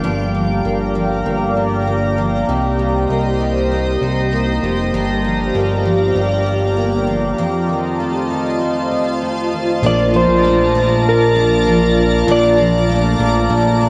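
A straight 4/4 pulse at 98 BPM carries this haunting, hazy dream pop passage in G minor, cut from a longer piece and tuned slightly low to A4 = 436 Hz. A thick, detuned sawtooth bass with a fast filter pluck sits up front, while a picked, octave-doubled twelve-string acoustic guitar plays full-bodied arpeggios through subtle chorus, cassette tape and tape echo. Above them, an ethereal ambient pad with an octave-up shimmer and granular texture holds slow-attack chords, colored by chorus, phaser and plate reverb. A dark, very quiet electric guitar is heard only briefly at the start, gone by 0.6 s. At 9.9 s, as the harmony moves from Gm7, Cm7 and F7 to Bbmaj7, a clean lap steel enters with a sliding melody with volume swells, sent through plate reverb and tape echo. The whole home cassette recording sits in a moderate studio reverb.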